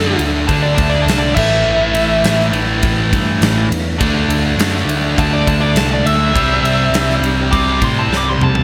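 Hard rock with an aggressive, driving edge, this excerpt from a longer piece sets a dark, smooth lead guitar soloing through overdrive and slapback echo over a bright, overdriven guitar riff and a sludgier distorted riff set back in the mix, with a growly picked bass, a mellow, flute-like tonewheel organ holding soft chords through a slow rotary speaker and chorus vibrato, and a huge, up-front arena drum kit with a punchy kick and bright cymbals that enters at 0.2 seconds and closes on a fill at 8.1 seconds, all moving through D, A5, D5 and C in a light small-room ambience.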